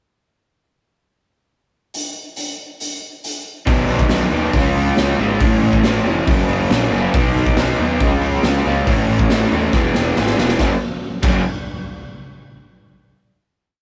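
A straight 4/4 garage stomp groove at 139 BPM drives this rowdy, swaggering garage rock piece, with the raw drum kit kicking off alone at 1.9 seconds for a pickup bar of crash, hi-hat, boomy kick and medium-tuned snare, saturated and gritty in a bright stone room that pumps. At 3.7 seconds the crunchy overdriven guitar and the fuzz-drenched picked electric bass arrive together for a pre-chorus moving through B, C#, A and F#, then again through B, C# and A before landing on E. The double-tracked guitar sits up front with driving eighth-note barre chords, while the bass pushes driving eighth notes underneath, its overdrive and fuzz giving a growling low end. A drum fill rolls through the last bar of the pre-chorus before everything comes to rest on a final F# chord. Light reverb and a rough rehearsal-room sound keep the whole short piece loose and loud.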